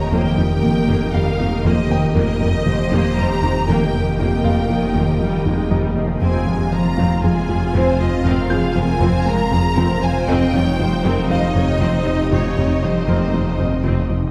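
Opening at once in a tense, futuristic cinematic score in F minor at 118 BPM, a clear, focused violin section carries the melody over a softer second violin line, lush viola and very quiet cello and double bass sections, an ethereal, airy pad with ensemble chorus and built-in reverb, a snarling distorted saw bass, a punchy, wave-folded analog bass riff, tight, driving synth arpeggios and faint touches of brilliant grand piano, all set back in a reverberant recital hall as the harmony moves from Eb/F to Fm at 6.2 seconds and Cm/F at 10.3 seconds in this fragment cut from a longer piece.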